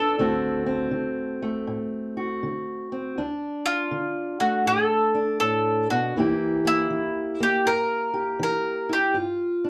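A picked bowl-back mandolin with doubled strings carries the melody up front over a dark, boxy fingerpicked parlour steel-string guitar in this laid-back, rollicking acoustic country blues fragment, swung in 4/4 and moving through dominant chords from D7 to C7 at 6.2 seconds before the mandolin stops at 9.2 seconds, all set in a small, reverberant room heard from further back.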